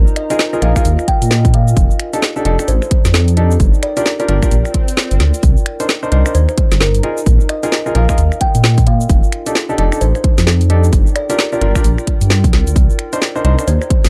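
Bouncy and moody, this two-step UK garage piece at 131 BPM in C minor rides a punchy, overdriven electronic kick and a garage kit of woody snare, metallic hats, finger snaps and shaker, over a deep, rumbling detuned saw bass that sits up front. A hollow, plucked kalimba melody and intimate grand piano stabs, both with digital delay, sit above a warbling, nostalgic tape-like pad with chorus, built-in reverb and sidechain pumping in the background. At 4.7 seconds an electronic swell sounds in the background, and the kick drops out from 5.0 to 5.4 seconds, all within a dark, dry production.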